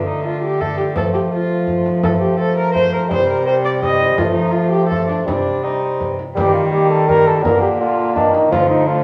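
A dark, close-miked cornet carries the melody over a clear bassoon and a rich, reedy gut-string cello from the very start, joined almost at once by a gut-toned viola second line and soon after by a frame drum struck with hard hands, in this courtly yet rustic renaissance-style consort dance in 3/4 at 168 BPM, its harmony moving through F, Cm, Eb and Bb to land on Dm as the short cut from a longer piece sits back in a reverberant stone room.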